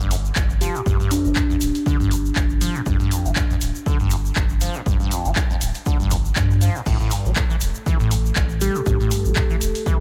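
A swung groove drives this raw, trippy acid house cut, with an analog drum machine's crash, handclaps and hi-hat entering at 0.1 s, a punchy electronic kick arriving at 0.4 s, and a grainy, close egg shaker throughout. A squelchy, resonant acid bass riff with filter sweeps, phaser, overdrive and delay rides over a deep, tube-saturated sub bass, both pumping against the kick. Brief woody, mellow kalimba phrases with 12-bit grit and delay ring out from 0.6 s, and a dark, detuned analog pad seeps into the background at 7.7 s under light reverb.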